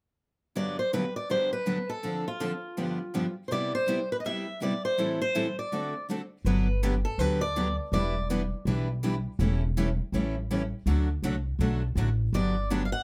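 A brisk 163 BPM swing in 4/4 drives this playful excerpt of acoustic string jazz manouche in G major, with a boxy, fresh-stringed swing guitar carrying the melody from 0.6 to 8.3 seconds and returning briefly near the end. Two bright steel-string acoustic guitars supply the picked accompaniment through chords such as Gmaj7, Dm7, Cmaj7 and A7/E, while a woody, thumpy pizzicato upright bass with gut strings arrives at 6.4 seconds as the second section begins. The close, detailed sound carries light reverb and keeps the melody guitar, one of the accompanying guitars and the bass up front.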